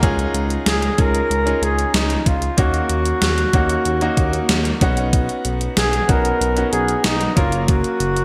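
A gated 1980s digital drum machine sits up front in this short excerpt of moody, urgent 1980s-style pop, its thumpy kick, hi-hat and overdriven snare with gated reverb setting a straight 4/4 pulse at 94 BPM. A clear grand piano with shimmer reverb carries the chords from Dbadd9 through Ebm7 and Badd9 to Gb, over a smooth, gliding synth bass with vibrato and portamento. From 0.7 seconds, a mellow, distant flugelhorn takes the solo melody, bathed in shimmer reverb and delay within a lush hall and a bright digital production.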